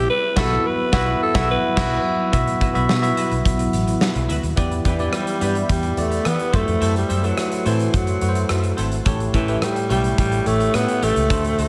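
Urgent and nostalgic, this 1980s-style pop excerpt moves at 107 BPM in a straight 4/4, with a breathy, raspy alto saxophone carrying the melody up front over a bell-like tine electric piano, a round, foam-muted fingered bass and a very quiet, glassy FM pad holding sustained chords. At 0.4 seconds a big rock drum kit with a punchy kick and bright cymbals joins, along with a twangy twelve-string electric guitar riff set in the background and treated with lush chorus and digital delay. The band hits an accent through the opening bars, and the harmony later moves from Em7 at 4.6 seconds through F#m7b5 to A7, all within a lush hall reverb.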